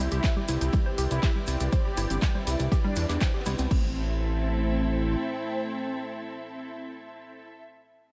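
Melancholic and hypnotic, this melodic techno fragment in A minor moves at 121 BPM, opening on a drop over C that settles onto A minor at 3.7 seconds. An overdriven, deep kick sits up front with a fat, detuned sawtooth bass that carries on until 5.2 seconds, while an analog drum machine adds congas, handclaps, hats and cymbals, joined by grainy maracas and a very quiet, gritty breakbeat kit with a high-tuned snare; the kick and all of this percussion drop out by 3.8 seconds. Sidechain pumping breathes through a moody analog pad, a lo-fi warbling pluck with tape echo, bowed ensemble strings and a round, phased synth-brass melody, the whole dreamy mix soaked in lush hall reverb.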